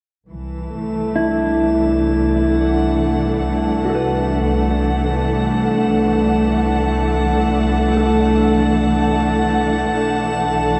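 Bathed in a dark cathedral reverb, this luminous, peaceful ambient excerpt in free time and C lydian sets a lush, sul tasto string section up front over an earthy, distant double bass section from 0.3 seconds, while a glassy texture of drifting overtones with chorus hovers above from 0.6 seconds and a mellow, clean electric guitar plays fingered arpeggios through tape echo from 1.2 seconds, moving to a rootless G6/B chord at 9.9 seconds.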